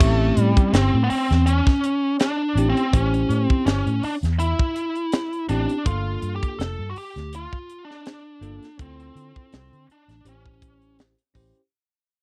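Opening together at 0.0 s, a biting, overdriven lead guitar carries the melody over a bell-like tine electric piano, a dark, round, foam-muted fingered bass and a tight funk drum kit with a high-tuned snare, in a smoky, mournful straight-eighth soul blues at 82 BPM that moves from A7#9 through Gm7 and Dm7 and back, captured dry and close in a 1970s-style studio while fading out across its 11.7 seconds, cut from a longer piece.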